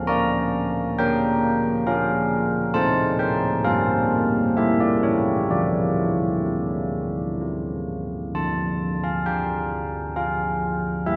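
A slow, straight pulse in 3/4 at 63 to 68 BPM carries this short piece of classical music for church bells in D minor. The mood is wintry and solemn. A carillon plays alone throughout, ranging from D3 up to Bb5, its bronze tone dark and mellow, with a soft, padded clapper and a ringing minor-third overtone. The harmony moves from Bb through F/A and Gm to A7 before settling on Dm at 5.5 seconds. The opening section gives way to a second section at 8.3 seconds, and the clip, cut from a longer piece, ends at 11.2 seconds. The bells sound from further back in a cathedral whose wet reverb lingers for 6.2 seconds.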